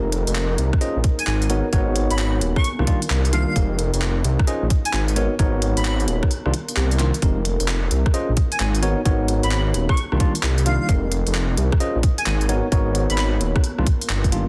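Gritty, filtered tine electric piano stabs with digital delay open this bouncy, late-night two-step UK garage excerpt in F minor at 131 BPM, over a deep, rumbling detuned saw bass up front and a moody, warbling pad pumping in the background, while a tape-toned garage kit of crisp hats, handclaps and rim clicks with a softly clipped snare is soon joined by a tight electronic kick that briefly drops out from 6.3 to 7.2 seconds, and an airy, dreamy lead with chorus, vibrato and delay floats above from 1.2 seconds over minor-eleventh chords in a dense, heavily limited master.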